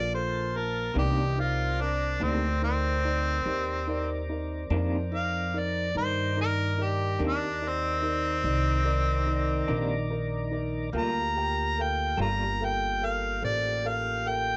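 A slow, mournful blues in a rolling 12/8, this brooding excerpt from a longer piece drifts over chords that move from a rootless Gm9 to Cm9 and back. Up front, the harmonica carries a jazz-styled solo across the whole passage, its overdriven tone smooth on top, shaded by light vibrato and scooped notes. Beneath it, a pizzicato upright bass on steel strings sounds woody and close, while a tonewheel organ holds clean sustained chords with audible key click through a slowly turning rotary speaker. A dark, mellow grand piano sits in the background, and from 0.9 to 12.4 seconds an electric guitar through a small old amp adds slightly broken-up, compressed, lo-fi fingered accompaniment with tremolo. Light reverb gives the warm ensemble a touch of space.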